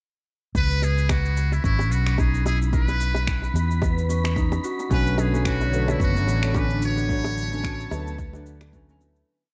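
A muted trumpet carries a free, jazz-style solo melody through this relaxed sunset chillout piece in C# Phrygian at 110 BPM, its buzzy, thin metal-mute tone sounding distant and roomy, with light vibrato and tape echo. Beneath it, a dark, round fretless electric bass plays long gliding notes up front with tube saturation. An acoustic concert harp rings out a fingerpicked sixteen-step arpeggiated sequence, also through tape echo. The groove swings its sixteenths, built from a soft, deep electronic kick and a light lounge beat of electronic cabasa and finger snaps, both overdriven and re-recorded in a large room, while low-tuned acoustic bongos sit close and dry in the background with analog delay. A wind-like, breathy tuned noise holds a high note, and at 4.9 seconds a worn, vintage grand piano joins with dotted-rhythm rootless chords alongside an airy, detuned pad with chorus and a slow attack. 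The harmony moves from C#m9 to Bm9, and the piece, mixed with light reverb and heavy echo, fades out from 6.4 seconds to its close.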